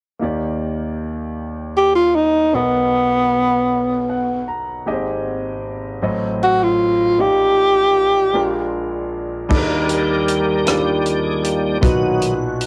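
A clear concert grand piano opens this hopeful, soulful slow gospel passage in 6/8 at 52 BPM in Eb major, joined at 1.8 seconds by a breathy tenor saxophone singing an up-front melody with scooped notes and vibrato, before a full, key-clicking tonewheel organ with fast rotary speaker takes a solo at 9.5 seconds over a tight funk drum kit with bright cymbals, all colored by cassette tape and moderate studio reverb in a home recording.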